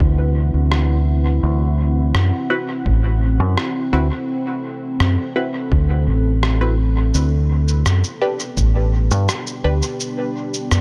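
A lightly reverberant, hazy and spacious ambient dub excerpt at 84 BPM in D mixolydian, built on a deep, moody sawtooth pad of detuned, chorused chords and a round, up-front fingered electric bass with tube saturation. A muffled, thumpy electronic kick plays until 8.7 seconds, while a compressed rim click and shaker with dub echo enters at 0.7 seconds, both re-recorded in a large room. From 2.5 seconds a muted, filtered chord stab with phaser and dub echo joins, as the harmony moves from D13 to G.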